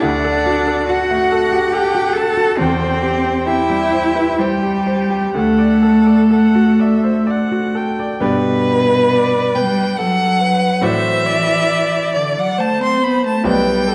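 In a rubato 3/4 lilt, this lyrical, serene slow romantic movement for piano quartet opens with a clear, up-front violin singing the melody with vibrato, while a rich, focused cello carries a prominent second line. A smooth, bowed viola and a brilliant grand piano with short sustain fill in the accompaniment. The dark production sits in the lingering reverb of a recital hall, and the music turns to a new section at 8.2 seconds in this fragment of a longer piece.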